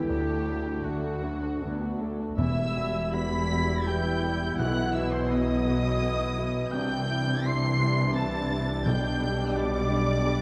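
In a rubato 3/4 at around 78-87 BPM, this sorrowful, longing E minor film cue for orchestra has a muted, con sordino violin section carrying the melody with lush vibrato, while a distant chamber violin section and a clear solo oboe trace a second line above veiled violas, a warm grand piano and mellow sustained horn chords in the background. A very quiet fingerpicked harp rings out arpeggios, and the cello and double bass sections anchor the bass from 0.1 seconds, with the double basses sounding close. Close, dry timpani with calf heads join at 2.4 seconds as the harmony moves through Emadd9, B and Cadd9 to G/B, all set in a moderate scoring-stage reverb in this brief excerpt from a longer piece.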